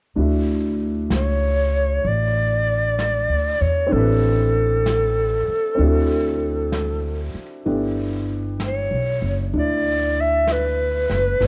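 A romantic, intimate jazz ballad with a slow swing, this short excerpt sets a breathy, dark clarinet up front from 1.1 seconds, its vibrato, subtone and scooped notes carrying a smooth, soft-edged melody over chords moving from Dmaj9 through Am11 and D7 to G6. A woody upright piano with long sustain provides accompaniment, while a pizzicato upright bass sits forward with a warm, woody tone and a brushed drum kit of snare and hi-hat murmurs quietly beneath. Light reverb and a worn cassette-tape quality with warbly pitch drift give the whole a warm, warbling glow.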